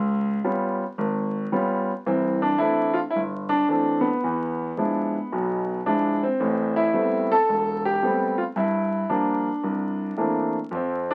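A swung eighth-note feel at 111 BPM in 4/4 carries this short solo jazz passage in C major, cut from a longer piece. A lone concert grand piano plays throughout, clear and up front, with a deep bass reaching down to E1 and a natural tone that climbs only as high as A4. The harmony moves through rich jazz colours, opening on a Db7#11 before settling onto C69 at 2.1 seconds, then passing through E7b9, Am9 and Gm7 to land on C13. The mood is swinging and warm, the playing set in a moderate studio reverb. Over it all lies the worn, crackling surface of a very old 78 rpm record, lending the sound an aged patina.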